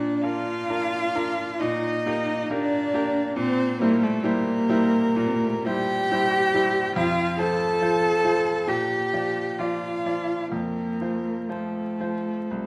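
Vinyl crackle sits over a moderate recital-hall reverb in this warm, serene excerpt from a slow romantic piano trio movement in Bb major, unfolding with rubato at 59-72 BPM in 4/4 and tuned to A4 = 435 Hz. A bowed violin carries the smooth, even melody with vibrato, while an up-front cello sings a focused second line with vibrato of its own. A bright, polished baby grand piano, present and brilliant with short sustain, supplies the accompaniment as the harmony moves from Bb through Eb/Bb and C7/Bb to F, back to Bb, and on to F once more.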